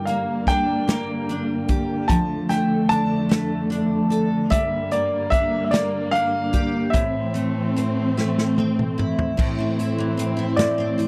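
A melancholic, dramatic six-eight pop ballad in a straight 6/8, heard as a short cut from a longer piece, with an intimate concert grand carrying the melody high in its range, its action noise audible, over a full-bodied, double-tracked picked dreadnought guitar and a lush bowed string section holding sustained chords with vibrato and portamento. A punchy, natural country drum kit with crash, hi-hat, kick, snare and toms joins at 0.1 seconds, and a drum fill from 8.2 to 9.4 seconds leads into a new section as the chords move through Gm, Dm/F, Gm and Am. The sound is a dry, close 1970s-style studio recording with light reverb and every part up front.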